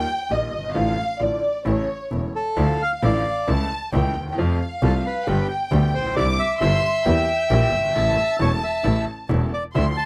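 Tango in a sultry, tense mood at 134 BPM with a rubato feel, opening on a dark, woody bowed violin section with vibrato over a bright, brilliant upright piano with short sustain and an up-front, biting, earthy bowed double bass, before a reedy, boxy bandoneon takes the melody at 2.4 seconds, all captured as a dry, close 1970s-style studio excerpt.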